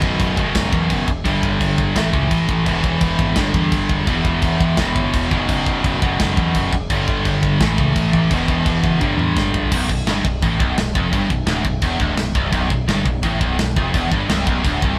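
Heavy metal in a heavy, aggressive mood, cut from a longer piece, opening in a half-time feel before a drum fill from 9.0 to 9.7 seconds launches a new section that settles on B minor. A scooped, high-gain guitar sits up front, double-tracked and distorted as it drives the riff through chords like G5, A and E, while a growling, overdriven picked bass and a tight acoustic kit with bright cymbals, a medium-tuned snare and a tight kick fill out the low end and the beat. The band sounds like it is playing live in one room, with a wet studio reverb and a faint mains hum beneath it all.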